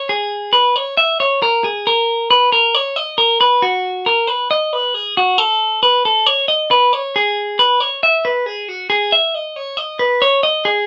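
A clean electric guitar plays alone and up front, its picked, twangy tone ringing out in a light reverb between F#4 and E5. This brief rock excerpt moves at a straight 136 BPM in 4/4, tuned to A4 = 438 Hz, with a wistful yet bright mood. At 8.9 seconds the guitar moves into a new section that carries it to the close at 10.9 seconds.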